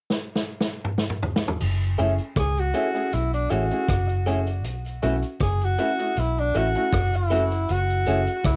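A distant, roomy tenor saxophone with light vibrato and tape echo carries a longing melody over this smooth lovers rock reggae excerpt in F# minor at 79 BPM, entering at 2.4 seconds after a vintage drum kit with dark cymbals opens on a fill and a round, foam-muted fingered bass and a background cabasa join at 1.6 seconds, while a worn grand piano and slightly broken-up picked guitar stabs through a small old amp fill out the F#m7 and B7sus4 changes, all captured as a home recording on cassette.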